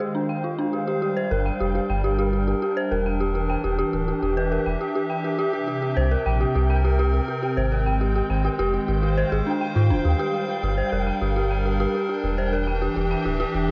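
IDM at 103 BPM in G dorian, eerie and melancholic, with a hollow, flute-like pad holding sustained chords with chorus beneath a dark, detuned FM synth bell whose inharmonic arpeggios carry chorus and tape echo, while a flickering, grainy granular texture sits in the background with its own reverb. A round, deep sub bass enters at 1.3 seconds, and the chords move through Gm7, Em7, C7 and Ab6. The sound is worn and warbling like old cassette tape, with pitch drift, a dull top end and light reverb, and the passage is cut from a longer piece.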